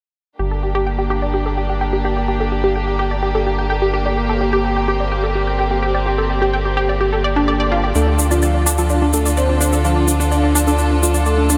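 A melancholic yet driving melodic techno excerpt, where a warm, reedy studio string section holds sustained chords beneath detuned sawtooth pluck arpeggios treated with phaser and delay, all anchored by a round, deep analog bass sitting up front. At 8.0 seconds a fat, warbling analog lead enters with a melody coloured by chorus, vintage 12-bit grit and analog delay, joined by a grainy egg shaker, as the harmony moves from G minor to D minor. The mix is dreamy and soaked in a huge ambient reverb.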